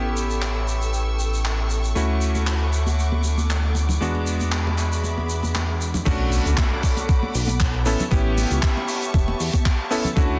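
A dense, heavily limited mix in a small, lightly reverberant room carries this sleek, cosmic nu-disco excerpt at 117 BPM with a light 16th-note swing, moving through A7, Dmaj7, E7 and Bm7. A glossy, detuned, chorused synth bass sits up front with tube saturation, while a bright, clangy electric grand piano comps with 12-bit sampler grit, dub echo and sidechain pumping over a lush, woody string section holding bowed chords with vibrato. A tight, low-pass-filtered funk kit of crash, handclaps, hi-hat and shaker drives the groove, high-tuned congas join in the background at 2.0 s, and at the drop at 6.1 s a thumpy, overdriven electronic kick punches in alongside a very quiet electronic impact.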